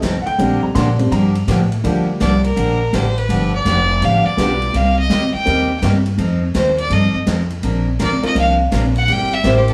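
A clear, biting fiddle carries the melody in this playful western swing excerpt. It is bowed by a single player with light vibrato and an intense edge, sitting up front from its entrance at 2.2 seconds. Before that, a warm upright piano opens with a short solo, drops out at 5.7 seconds and returns near the end. Underneath, a woody, thumpy pizzicato upright bass on gut strings gives a dark, up-front foundation, while a bright, picked dreadnought acoustic guitar adds accompaniment with audible finger squeak. A polished, airy big-band drum kit swings on hi-hat, ride cymbal and a medium-tuned snare, and the whole band plays live together in a small, wet-sounding room.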